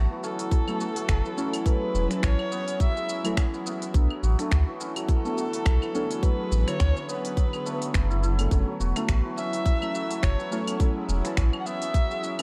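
Dark, lightly reverberant production gives this organic downtempo piece a mystical feel at 105 BPM in F# minor, swinging gently on the 16ths as the chords move from F#m7 to Bm7 and back. A woody, bowed kamancheh carries the melody with vibrato and portamento through tape echo, while a shimmering, hammered santur rings out arpeggios through delay and a detuned, wave-folded chord stab pumps with chorus and delay. Beneath them, a round sine sub bass and a tight, up-front electronic kick anchor an electronic kit of claves, finger snaps, smooth hi-hat and shaker, and a tense, string-like drone holds sustained chords in the background.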